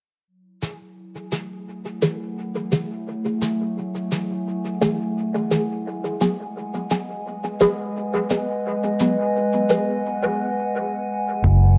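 A hazy, spacious ambient dub passage opens at 0.6 seconds with a muted, nasal sawtooth chord stab, colored by phaser, ensemble chorus and dub echo, over a muffled, overdriven cabasa that trails its own dub echo. A warbling, nostalgic lo-fi pad enters just after to hold sustained chords under a filter sweep, moving from F#m9 to G#m7 amid moderate spring reverb. After a break at 10.0 seconds, a round, punchy foam-muted electric bass arrives up front at 11.4 seconds with a deep electronic kick in the background.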